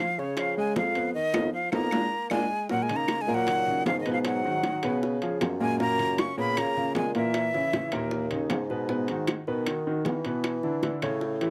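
A dry, close 1970s-style studio sound with light reverb frames this sophisticated, driving Afro-Cuban jazz cut from a longer piece, moving at 155 BPM in Eb minor. A breathy, bright metal flute with soft attack and expressive vibrato carries the melody up front, shadowed in the background by a tenor saxophone with scooped notes and a smooth top, while a clear, intimate grand piano with audible action noise comps alongside and a mellow bassoon with light vibrato holds the bass. Round, low-tuned bongos, ringing metal-shell timbales and woody claves drive the groove, with a band accent from 1.2 s, a drum fill from 2.1 s, and the flute and saxophone dropping out at 8.3 s.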